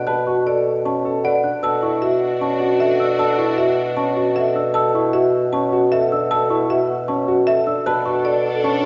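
Classical minimalist pattern music at 154 BPM in a straight 4/4, this short excerpt feels both meditative and urgent. A concert grand piano with long sustain and a delicate, bell-like celesta both play arpeggios, with the celesta sitting high above the piano's middle register. A marimba struck with hard mallets carries the melody in a woody, percussive voice that has a slightly vintage edge. Underneath, a mellow solo bassoon holds a low B as the bass, placed up front. A smooth, distant string section adds sustained chords from 1.6 to 4.5 seconds and returns at 7.9 seconds, as the harmony moves from Bm7 to Dadd9/B and back. The whole ensemble sits in a reverberant scoring-stage space and is heard from further back in the room, with a soft, rolled-off top end.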